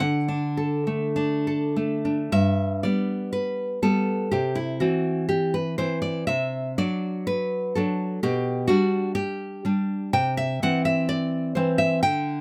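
Romantic solo classical guitar in G major, this sunny, tender excerpt from a longer piece moves in a rubato 2/4 at 50-66 BPM. A warm, fingerpicked nylon-string guitar sits up front, ranging from G2 to G5, captured by close, detailed microphones with little reverb, and it drifts from an opening D chord to G at 2.3 seconds before passing through C, D7/C and G/B to settle on C at 10.1 seconds.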